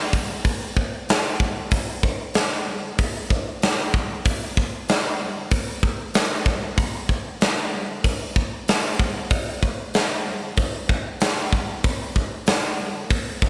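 A big rock drum kit sits up front in this heavy, ominous metal excerpt, its acoustic sound carrying a punchy kick, a medium-tuned snare and hi-hat in a bright stone room. The drums play in a straight 4/4 feel from 0.1 seconds to 13.5 seconds, with little reverb around them.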